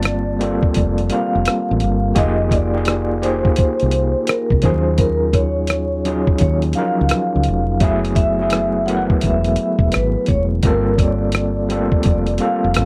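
Soulful and introspective, this neo-soul R&B excerpt moves at 85 BPM in 4/4 with a swung sixteenth-note feel, its harmony drifting through rich minor eleventh chords from Gm11 to Fm11, Ebm11 and F#m11 before returning home to Gm11 at 10.6 seconds. A mellow vibraphone played with soft mallets carries the melody, its metallic ring shimmering with a fast motor vibrato, while a gritty, overdriven tine electric piano pulses with medium tremolo through a combo amp, and a woody fretless bass sits up front with a round, hollow-body tone. A compressed, sampler-style soul kit of hi-hat, thumpy kick and rim click anchors the groove, all captured in a dry, close 1970s-style studio sound dusted with vinyl crackle.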